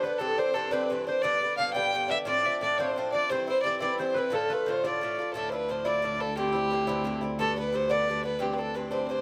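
Close, detailed microphones and a light reverb give this short cut from a longer piece an intimate, present sound. It is a driving, lively Celtic jig in 6/8 at 117 BPM, set in D dorian with a shadowy edge. A single bowed fiddle carries the melody up front, its boxy, dark tone touched with light vibrato. Beneath it, an Irish bouzouki picks the accompaniment with a metallic bite from its double strings, also close at hand, while a fingerpicked concert harp adds a ringing second line until 6.7 seconds. At 5.3 seconds the tune moves into a new section over a Dmadd9 chord, and a distant, woody cello enters with a bowed drone on a low D, its vibrato adding depth under the harmony as it cycles through Cadd9, G/D and back to Cadd9.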